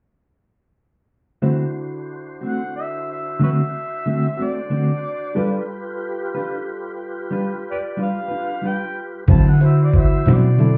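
In a laid-back, gritty 12/8 slow blues at 61 BPM in D mixolydian, moving from D7 to G7 to D9, a compressed, clean picked electric guitar with tremolo sits up front over a woody, slightly detuned upright piano and a lightly overdriven tonewheel organ turning on a slow rotary speaker with chorus vibrato, while from 2.5 seconds an overdriven harmonica solos in jazz style with vibrato, tongue slaps and scooped notes, and at 9.3 seconds a dark, round, foam-muted fingered bass and a thumpy, pitched-down, tape-flavoured sampler-style trip hop drum kit arrive up front, the whole short excerpt cut from a longer piece and heard muffled as if through a wall in a club.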